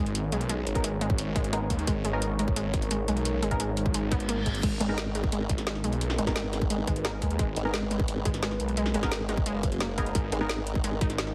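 A snarling, detuned saw bass growls up front from the start alongside a bright, wave-folded unison pluck arpeggio with delay, soon joined by a deep, warbling ambient pad holding chords, with bass, pluck and pad all pumping under sidechain, and by a drum kit of woody snare, metallic hi-hats and crash in this aggressive, tense excerpt of dark technical drum and bass. A tight, layered electronic kick and a muted, evolving dub chord stab with chorus and delay arrive at 0.8 seconds, and a brief reverse cymbal at 4.1 seconds leads into a formant-swept wobble bass, saturated and placed up front, at 4.8 seconds. The mix sits in a light digital ambience with a heavily compressed, radio-like sound.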